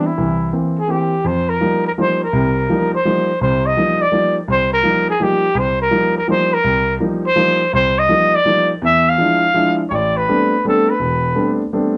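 A breathy, whispered trumpet carries the melody in this short jazz excerpt, sitting up front with a soft attack, vibrato and an intimate, vintage tone. Beneath it, a baby grand piano supplies accompaniment in the low and middle registers, its natural, short-sustained notes also close and present. The piece moves at a brisk 166 BPM in 3/4 with a swung eighth-note feel in F dorian, giving it a cool, searching mood. The harmony passes from C7 into a long stretch on F9sus4, touches E7b9, and settles on Am11 at 9.9 seconds. The trumpet drops out at 11.6 seconds, leaving the piano alone until 12.0 seconds. A wet club reverb and a dark, warm production frame the pair.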